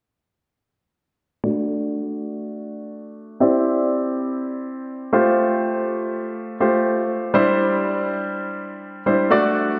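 In a straight 4/4 at 122 BPM, this summery, upbeat pop excerpt in C major features a clear, polished baby grand piano playing up-front accompaniment through D, Cadd9, Fadd9 and Cadd9 from 1.4 to 9.8 seconds, shaped by a low-pass filter sweep and soaked in a lush, dreamy hall reverb.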